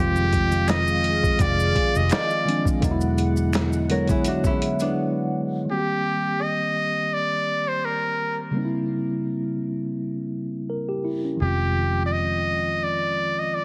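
A buzzy, breathy trumpet with a metal mute carries the melody up front in a jazz style, floating over a sultry, smooth neo-soul and R&B groove with a light swing. A mellow, clean tine electric piano plays the accompaniment throughout, joined at first by a slow-attack, warbling analog pad with lush chorus and a round, foam-muted fingered electric bass. A gritty, pitched-down boom bap sampler-style kit with a thumpy kick, hi-hat, snare and finger snaps drives the opening, with maracas and finger snaps sitting close and dry in the background, while a small, bright fingerpicked nylon-string guitar adds a brief second line. The bass stops at 4.9 s, and drums and percussion follow at 5.0 s for a short break, after which the pad and guitar also drop away, leaving trumpet and electric piano alone until the bass returns at 11.4 s. The mix is heavily compressed with a radio-like sound and light studio reverb, and this fragment is cut from a longer piece.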